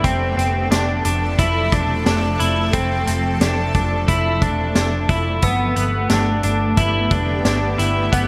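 Dream pop at 89 BPM in a dreamy, ethereal mood, cut from a longer piece, where a shimmering pad with chorus and reverb sustains chords under twangy, up-front clean electric guitar arpeggios through analog chorus and delay, a dark, round muted picked bass, and a punchy, gritty vintage drum kit with gated reverb, while a bell-like glockenspiel with soft plastic mallets rings in the background from 5.4 to 6.7 s as the harmony moves from F to Gadd9, all set in a lush hall with bright 1980s-style digital production.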